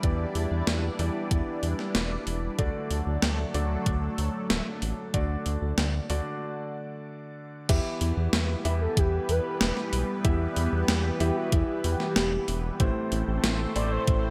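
An expressive portamento lead with a smooth, warbling vintage tone enters at 8.7 seconds, its vibrato-laden melody colored by analog chorus, digital delay and shimmer reverb. This nostalgic, moody synthwave excerpt in straight 4/4 is cut from a longer piece, moving from Em7 and D through a break at 6.4 seconds into Em and Am. Beneath it, a lush, thick unison pad holds sustained chords with a slow attack, chorus, phaser and sidechain pumping. A concert grand piano adds intimate, polished stabs with audible action noise, long sustain, subtle chorus and a delay-tinged shimmer. A round, deep analog bass with tube saturation sits up front, evolving and dark, while a thumpy, tape-warm electronic kick pairs with a gated 80s digital drum machine playing crash cymbal, hi-hat and a gated reverb snare re-recorded in a small room. The production is bright and 1980s-styled, set in a moderate plate reverb with digital ambience.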